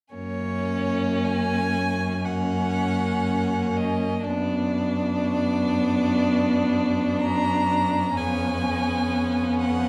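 Moving in a flexible rubato between 53 and 64 BPM in 4/4, this lyrical, tender string quartet movement in F# major is cut from a longer piece. A rich, focused first violin sings the melody with vibrato and a smooth top, while the second violin adds an expressive, distant line with portamento. The viola supplies accompaniment, and a clear, even cello holds the bass up front. The harmony shifts from F# to Bm/F# at 4.3 seconds and C#7/E# at 8.2 seconds, set in a wet recital hall reverb.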